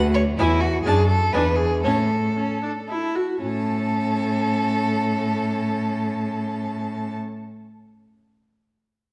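A clear, up-front cello anchors the bass beneath a focused, vibrato-laden violin melody set at a distance, a rich second violin with a smooth top carrying an inner line close by, and an even, bowed viola accompaniment in this cheerful, graceful classical-period string quartet movement in A major and 3/4, quick at 111-129 BPM yet slowing over the first 3.4 seconds as the harmony moves through E, D/F#, E7 and A before a new section begins at 3.4 seconds, heard in a dark, reverberant recital-hall sound and cut from a longer piece.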